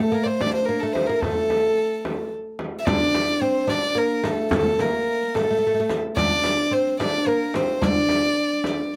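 Close, detailed microphones and a light reverb frame this soulful, hypnotic Arabic maqam ensemble piece in 6/8, cut from a longer performance. Up front, a single bowed violin carries an intimate melody with light vibrato, a soft attack and an airy sul tasto tone, while a woody, deep fretless oud, plucked with a plectrum on double strings, plays a second line beneath it. A distant frame drum struck with hard hands enters at 0.4 seconds as if from a large room, and a vintage, band-limited riq with dark jingles joins in the background at 2.9 seconds.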